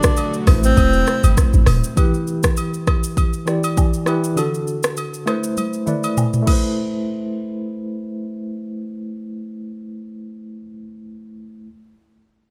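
A hypnotic, sultry afrobeats fragment opens with a breathy, close-miked tenor saxophone phrase in tape echo, a clean tine electric piano through a combo amp with medium tremolo, a very quiet detuned, chorused pad and an up-front electronic afro-pop kit with a deep kick, while dry agogo bells and woodblock enter just after the start and a boomy 808-style sine bass joins briefly over Amadd9, Em and D chords in a recital hall reverb, the drums ending with a fill at 5.6 seconds and the electric piano carrying on alone until 11.7 seconds.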